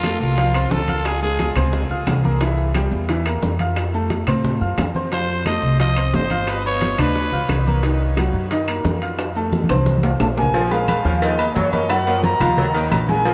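A raspy, growling trumpet with tape echo opens this danceable, passionate salsa excerpt over brilliant upright piano, a thumpy gut-string upright bass up front, and a background bed of low-tuned congas, tight bongos and cowbell, metal-shell timbales with agogo bells, grainy maracas and very quiet woody claves, all soaked in a dreamy, huge ambient reverb, until a drum fill at 9.2 seconds leads to an airy, reedy clay ocarina melody at 10.2 seconds, joined at 10.5 seconds by a distant, roomy saxophone section on a second line.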